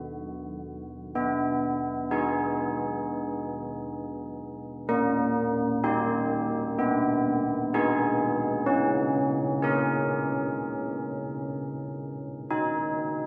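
The sound is wrapped in a moderate concert-hall reverb that lets each stroke hang in the air, while the bells themselves sit up front. This short classical excerpt, cut from a longer piece, is a tune for church bells, solemn and wintry in mood, moving at a slow, straight pace in four. Old church bells carry the whole piece alone, ringing through a span of about one octave with a bronze, clangorous tone, the iron clapper audible at each strike and a minor-third overtone coloring every note. Their beating partials give the sound an airy shimmer as the harmony passes from B5 through G#m/B, D#/A# and A#m7/C#. At 12.5 seconds the chords give way to an unharmonized close.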